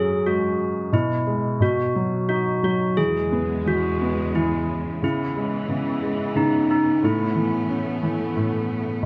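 A sleepy, tender children's lullaby in E major opens with handbells carrying the melody over a felt-muted upright piano, both heard from 0.0 seconds. The bells ring clear and bell-like with hard clappers, sitting up front in a boxy small-room sound, while the piano's thin felt gives its accompaniment a soft, mellow intimacy. At 3.0 seconds a clear studio string section enters beneath them with sustained, bowed chords, its vibrato and smooth top adding a lush, focused ensemble layer at a lower level. The music moves in a rubato 3/4 around 89 BPM, drifting through chords such as F#sus2, E6, C#m7 and Aadd9. A moderate recital hall reverb and a dark production wrap the whole, and the passage is cut from a longer piece.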